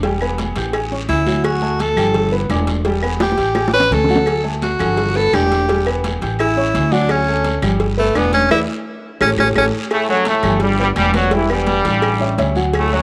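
Light studio reverb gives this festive, sunny salsa excerpt an open, lively sound, moving at a brisk 170 BPM in a straight 4/4 over a cycling progression built around Em, A7, D and G. Up front, a warm tenor saxophone solo with light vibrato and a punchy pop-style edge carries the melody from 1.1 seconds, and a band accent at 8.5 seconds leads into a brilliant, tight trombone section that takes over the tune at 9.9 seconds. Beneath them, a thumpy upright bass with gut strings plays pizzicato, while a dark, mellow upright piano with short sustain fills in the harmony. Most of the percussion sits in the background: bright, high-tuned congas struck with hard hands, round, low-tuned bongos and cowbell, ringing agogo bells and timbales heard at a distance in a large room, and woody claves close and dry, joined by a raspy guiro in a live room. Two drum fills punctuate the saxophone's passage, and the clip is cut from a longer piece.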